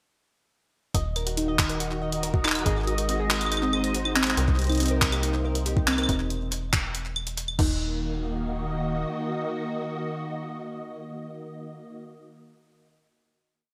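A bright, 1980s-style digital production with moderate plate reverb frames this short, cerebral IDM piece at 140 BPM, where a gritty, pitched-up sampler kick thumps out a broken pattern beneath an up-front, glitched jungle-style kit of claves, closed hi-hat, claps and crash, treated with gated reverb and digital delay. A metallic FM bass with tube saturation holds the roots while a harp-like, ringing pluck runs a 16-step arpeggio through chorus and delay, a bubbling, resonant filtered texture sits in the background on a held high note, and a silky vintage string machine pumps gently under sidechain with slowly shifting chords over Ebm, Ab7 and Cm7. The groove breaks off at 7.8 seconds, and as the pluck and bass ring out and fade, the strings sustain a final Ebm chord until 12.0 seconds.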